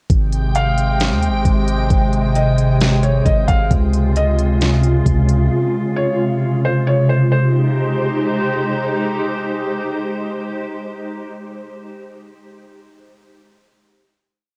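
A felt-muted upright piano with audible action noise loops a sparse, intimate melody through a low-pass filter and analog delay from 0.6 to 8.6 seconds, floating over a glassy, ethereal FM pad with sidechain pumping, deep sliding 808 sub-bass, a cassette-tinged half-time R&B kit with knocking kick and smooth hats that stops at 5.4 seconds, and a faint, bright glass-harmonics texture, until the pad rings alone after the piano fades, carrying this blissful cloud-rap hip hop piece to its end.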